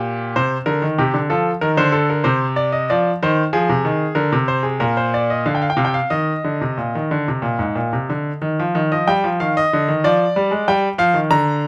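Classical baroque-style two-part invention for solo baby grand piano, moving at a stately yet joyful 94 BPM in 4/4, beginning in C minor before turning toward Eb major from 3.5 s. The bright, brilliant piano sits up front with long sustain and audible action noise, its range spanning Ab2 to Bb5, captured by close, detailed microphones in light reverb for an intimate, polished sound. Harmonies pass through Cm and Cmadd9 to a rootless Fm7 and Csus24, then settle on Eb at 8.8 s and open onto Ebmaj9 at 10.0 s in this short cut from a longer piece.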